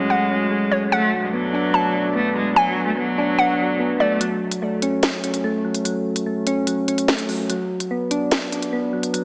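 Heavily compressed, with a small-speaker radio quality and a moderate lush hall reverb, this cold, tense drill excerpt moves at 146 BPM in a half-time feel, in F# minor. It opens on a rich, bowed cello melody with vibrato, played by one player up front and softened by a low-pass filter, over soft, round electric-piano-like synth keys that carry the chords through to 9.2 s. An airy, breathy pad sits in the background with slow-attack sustained chords, while a hollow, bouncy square pluck traces a higher second line through chorus and tape echo. At 4.2 s the cello, pad and pluck stop, and a break begins. Here an electronic drill kit enters, its sharp snare and crisp hi-hats roughened with vintage 12-bit sampler grit, backed only by the mellow keys as the harmony moves between F#m and Bm/F#.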